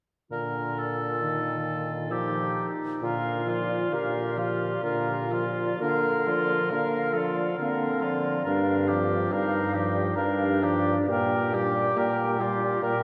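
Bathed in a wet cathedral reverb and heard from further back in the room, this excerpt from a slow, romantic classical movement for wind quintet carries a tender, warm mood in triple metre with a free rubato feel. A mellow bassoon holds the bass beneath a clear, smooth-topped clarinet and a French horn in accompaniment, while the oboe sings a distant, roomy second line. At 3.0 s a hollow, pure concert flute enters with the melody, its vibrato and tongued notes sounding close-miked.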